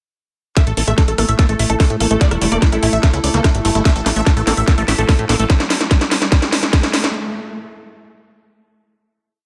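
A tight, up-front electronic kick drives this short, driving psychedelic trance build-up, with cracking snare, rim clicks and metallic hats from the drum kit, a punchy, tube-saturated plucky analog bass rolling in sixteenths, a squelchy overdriven acid bass line under a filter sweep with tape echo and sidechain pumping, a detuned supersaw stab repeating its phaser-treated riff over a pedal note, a barely audible nasal vowel-sweep wobble bass until 2.8 seconds, a bright, very quiet pulsing gated drone, a nostalgic, warbling lo-fi pad shifting slowly in the background from 1.3 seconds, and a faint riser arriving at 5.1 seconds, all in light reverb.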